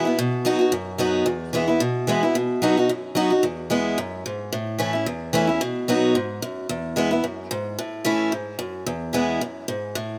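A brisk 221 BPM in 4/4 drives this bluegrass fragment, with a light swing on the eighth notes giving the picking a loping, rustic bounce. A lone steel-string acoustic guitar carries the whole 10.2 seconds, picked with virtuosic energy across a span from E2 up to F#4. Its tone is bright and boxy, with a parlour-size character, sitting up front in the mix, and finger squeaks slip through. In E major, the harmony circles between B and E, touches A, and returns to B and E, and a new passage begins at 7.8 s that moves from A back to E. Light studio reverb surrounds the guitar in a rough, homespun demo mix, and the clip is cut from a longer piece.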